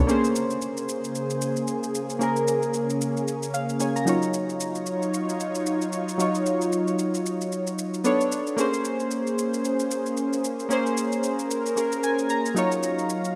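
Deep and soulful, this amapiano excerpt puts round, chorused analog keys up front, with fills at 3.3 and 11.8 seconds, over a thick, detuned unison pad holding sustained minor-ninth chords and a layered electronic shaker on a swung sixteenth feel, set in a lush hall reverb within a rough home-demo mix.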